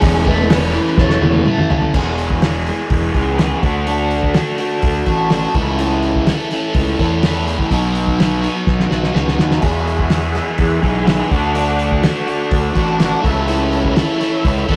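A rough rehearsal-room recording with tube saturation and a moderate studio reverb frames this hypnotic, kaleidoscopic snippet of psychedelic rock in a straight four. A bright, double-tracked overdriven guitar with phaser drives the riff up front beside a round, fuzzed fingered bass, while a cloth-damped drum kit with dark cymbals, a fat snare and a tight kick thuds underneath and rolls through fills. In the background, a clean tonewheel organ with key click, chorus vibrato and a slow rotary speaker holds sustained chords, dropping out at 1.4 seconds and returning at 9.6.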